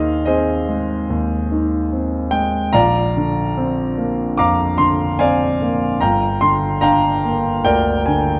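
A clear concert grand piano opens alone on a hazy Fm9/Eb chord, moving through Bbadd9 at 2.7 seconds and settling on Gm7 at 6.0 seconds in this wistful impressionist fragment cut from a longer classical solo piece. The rubato playing drifts around 73 BPM in 4/4, spanning from a deep bass low in the range up into the upper register, with natural, long sustain. Placed up front in a dark production, the instrument sits within moderate scoring-stage reverb that lends the short passage a hazy, dreamy glow.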